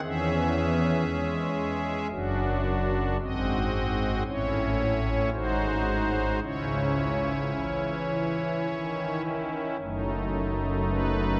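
A dark, wet cathedral reverb with a 5.7-second decay surrounds this brief fragment of a solemn, chorale-style classical piece in 3/4, played with flexible rubato. A solo pipe organ on strings celeste stops sits up front, its soft, shimmering tone voiced in a romantic manner across a span from deep bass to the upper register. The harmony passes through chords such as C#m, G#7 and A before a new section opens on D#dim/F# at 9.8 s, running until the fragment ends at 11.4 s.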